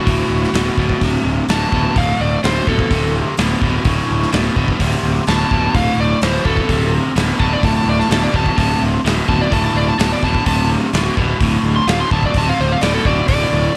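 Blues rock in a power-trio, southern rock vein, this raunchy, driving excerpt moves at 127 BPM in a straight 4/4 in D mixolydian, with an overdriven slide guitar taking a fingered solo melody ranging between F#4 and C6 across the whole 13.8 seconds. Beneath it, a double-tracked, up-front overdriven electric guitar picks a low riff with spring reverb, while a growly fuzz bass sits on D1 and a big acoustic rock kit, polished and airy with a punchy kick and medium-tuned snare, drives hi-hat, kick and snare. The mix carries light reverb and small room ambience, with the drum kit ringing in a bright stone room.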